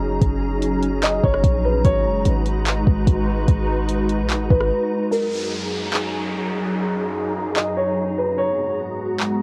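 A half-time 147 BPM groove of soft kick, hi-hat, handclaps and rim click drives this floating, blissful atmospheric cloud-rap excerpt in F# major, where a glassy, chorused FM pad sustains F#6 and G#m7 chords beneath an intimate, felt-muted upright piano melody with analog delay, a deep, boomy 808 bass stops at 4.7 s for a brief break, and an electronic downlifter and filter sweep arrive at 5.1 s, all within a lightly reverberant cassette home-recording sound.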